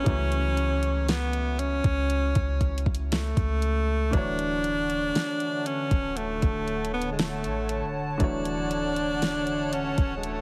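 A bright, up-front alto saxophone carries the melody with pop-style vibrato and a digital delay, set over a clear, worn grand piano and a deep, boomy 808-style bass with a dark sine tone. This tender, smooth contemporary R&B excerpt moves at a slow 59 BPM in D major, with an electronic drum kit of soft kick, fat snare and warm hats, shifting from F#m7/C# to Dmaj7 at 4.1 seconds. At that point a hollow, flute-like pad with chorus enters on sustained chords, and the whole mix carries a heavily compressed, radio-like ambience.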